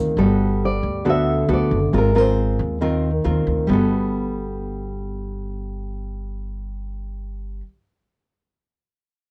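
A fingerpicked nylon-string guitar melody, warm and up front with a cassette-tape tint, sings from 0.7 to 2.6 seconds over a dark, full-bodied classical nylon-string accompaniment with fresh strings and a woody, thumpy gut-string upright bass played pizzicato, in a romantic, sophisticated bossa nova excerpt that moves between Gmaj9 and Ab69 with light reverb and the homespun character of a cassette home recording.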